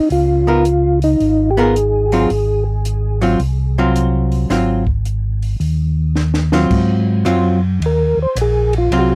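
A dry, close 1970s-style studio sound frames this greasy, swinging soul jazz organ trio excerpt: a soft, flute-like percussive tonewheel organ carries the melody through chorus vibrato, slow rotary speaker and tape echo, while a round, dark tonewheel organ holds down the bass and an up-front, hollow-body archtop guitar adds clean, picked accompaniment. Beneath them, a compact cocktail drum kit with a high-tuned snare and tight kick sits quietly in the mix, playing a fill at 6.2 s before an organ solo takes over at 6.7 s.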